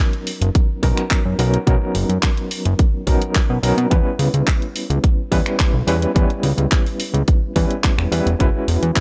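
A dry, close-sounding nine-second cut from a longer nu-disco track, grooving and feel-good at 107 BPM in B major, moving from Bmaj9 to Em6 and landing on F#9sus4 at 8.4 seconds. A gritty, barky overdriven reed electric piano with fast tremolo and analog delay, heard through a combo amp, opens alone before a layered house drum kit of finger snaps, handclaps and hi-hat arrives at 0.1 seconds. A fat, saturated analog bass with a detuned sawtooth-and-square filter pluck enters at 0.4 seconds, sitting up front beside a punchy electronic kick drum.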